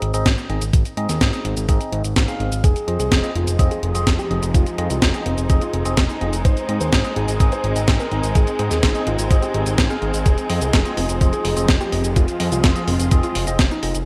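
Italo disco with a nostalgic, melodramatic air, built on a fat, detuned, saturated analog bass and a thumpy electronic kick that enters at 0.3 seconds, while a clean 12-bit drum machine sits up front with cabasa, hi-hat and a medium-tuned snare bathed in gated reverb. Barky tine electric piano stabs with a phaser ride over the groove. From 2.6 seconds a dark, boxy concert grand carries the melody through digital delay as a distant string section adds expressive sustained chords with vibrato and portamento, all within a bright 1980s-style digital production and light reverb.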